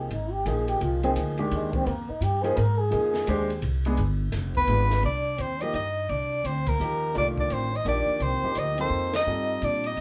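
A swinging 3/4 waltz feel drives this searching, spiritual modal jazz excerpt, played live by a band in one reverberant studio room. A bucket-muted trombone opens with a veiled, distant solo full of vibrato and scooped notes, backed by a warm grand piano with short sustain, a woody, thumpy pizzicato upright bass sitting up front, and a dark, smooth cocktail drum kit with a high-tuned snare and punchy kick. A breathy soprano saxophone with light vibrato enters at 4.6 seconds to carry the melody, and the band punches out accents at 6.6 and 9.1 seconds.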